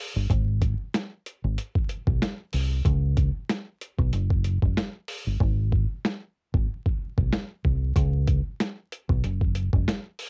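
Boom-bap hip-hop at 94 BPM in 4/4, with a light swing on the sixteenths and a gritty, tough mood, taken from a longer piece. A deep, dark fingered electric bass sits up front from 0.2 seconds, its round, punchy tone heard direct and amped in the low register between F#1 and C#2. Alongside it, a dusty, soul-flavored sampler-style drum kit of kick, snare and hi-hat arrives at 0.3 seconds, compressed and overdriven, with a thumpy kick and a medium-tuned snare pushed to the front of the mix. The hi-hats drop out between 5.4 and 8.0 seconds, leaving kick and snare with the bass before they return. The sound is dry, with the character of a home cassette recording and a layer of vinyl crackle.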